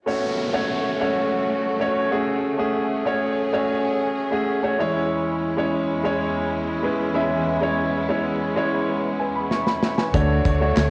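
A hazy home-cassette sound, opened up by a lush hall reverb, frames this short piano-driven pop passage in F# minor at 95 BPM, with a driving yet bittersweet mood. Up front, a polished, present grand piano with long sustain carries the accompaniment from the start, its tone softened by tape. Beneath it, a close, woody string ensemble holds bowed chords with vibrato, also tape-coloured, while an electronic downlifter sounds until 5.1 s. The harmony moves from F#m to C#m/E. A drum fill on an acoustic kit enters at 9.5 s, with a tight kick, medium-tuned snare, hi-hat and handclaps, all smooth and rolled-off on top and carrying the same cassette grain. At 10.1 s, a round, punchy, foam-muted electric bass with a dark, amped tone lands on D2 as the chord shifts to Dmaj7.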